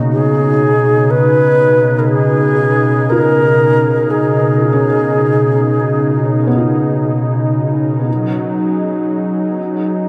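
Peaceful and warm, this ambient passage, cut from a longer piece, moves at 60 BPM in Db mixolydian, with a smooth, detuned analog pad holding up-front sustained chords through a chorus effect, shifting from Db9sus4 to Gbsus2 at 8.1 s. Behind it, a felt-muted upright piano plays soft, intimate arpeggios with audible action noise and short sustain, sent into a diffuse ambient delay. An airy alto flute with vibrato and a slightly unsteady tone carries the melody from 0.1 s to 7.1 s, all within a dark production and a vast, wet reverb.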